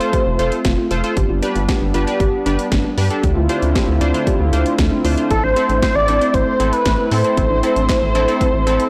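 A punchy house drum kit with a cracking snare, handclaps and hi-hat opens this driving, nocturnal synth-pop excerpt together with a funky, warbling polysynth comp, a smooth analog pad and a soft, round pluck arpeggiating in the background through digital delay, while a rubbery, hollow square bass enters at 0.3 seconds. A bold, retro octave-doubled lead with vibrato and chorus sings briefly at the start, then returns up front at 5.3 seconds as the harmony, having moved from F and G through Dm7, arrives at Am. The mix is blown-out and overdriven, with light reverb and a digital ambience.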